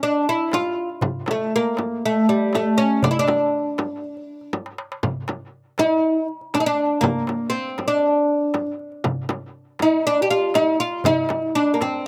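A bright, woody oud opens this hypnotic, longing Arabic maqam excerpt, its plectrum-plucked double strings carrying the melody up front between G3 and G4. A crisp, metal-shelled darbuka and a warm frame drum join almost at once, sitting close and dry beneath the fretless lute at a steady 120 BPM in a straight 4/4. The opening phrases sit in D maqam nahawand, and a drum fill at 4.5 seconds leads into a shift to D maqam bayati at 5.0 seconds. The small, high darbuka stays lower in the mix than the frame drum, while the acoustic trio plays on to the cut. Captured outdoors with little reverb, the sound is intimate and immediate, with the oud's double-course ring clearly defined.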